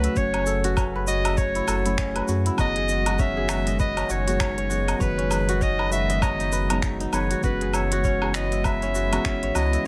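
A clear, up-front clarinet melody leads this mystical organic downtempo piece at 99 BPM, floating over fingerpicked, ringing kora arpeggios with delay, muted felt-like synth keys with chorus and delay, and a warbly, nostalgic tape-like pad, while gritty 12-bit sampler texture and tape echo color the clarinet. A round sine sub bass with tube saturation and an organic electronic kit of cabasa, finger snaps, crisp hi-hat and woodblock carry a swung 16th-note feel, joined at 0.2 seconds by a knocking electronic kick, with sidechain pumping on the bass, keys and pad. Moving from F#madd9 through G#m7/F# to C#m7/F# under light reverb, this short cut from a longer piece feels intimate and warm.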